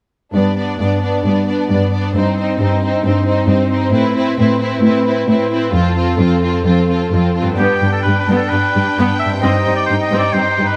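A lush orchestral sound in light reverb opens this short cut from a heroic, adventurous film score in G mixolydian, moving at 132 BPM in a straight 4/4 over chords of G, Cm/G, Amadd9 and F. Violins carry a smooth-topped melody over a second violin line, rich bowed violas and a focused, up-front cello bass, while mellow French horns hold sustained chords in the background until 7.3 seconds. At 7.6 seconds a new section begins, with a bright, ringing harp arpeggiating from 7.4 seconds and a punchy, roomy solo oboe adding a second line.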